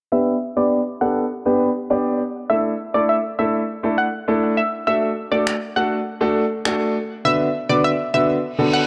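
A clear, open concert grand piano with deep bass sits up front under a round, sawtooth analog pluck melody with chorus and delay in this upbeat, euphoric dance-pop excerpt at 101 BPM, moving through G, Asus4, D and Bm/D beneath a filter sweep, with overdriven, layered electronic finger snaps appearing at 5.5 seconds and a reverse cymbal closing at 8.6 seconds, all set in a lush hall reverb within a dark production.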